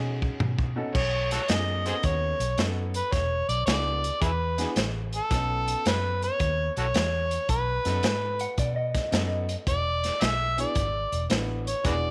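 Swaggering and soulful, this electric blues shuffle at 110 BPM in B mixolydian opens with a drum fill on a crunchy, saturated breakbeat kit with dark cymbals, alongside a round, foam-muted fingered bass and a clear, woody upright piano, while an overdriven harmonica takes the gritty, vibrato-laden lead from 1.0 seconds with tongue slaps and scooped notes, and a lo-fi, slightly broken-up electric guitar through a small old amp adds a brief tape-echoed line at 8.4 seconds, set in a lightly reverberant room.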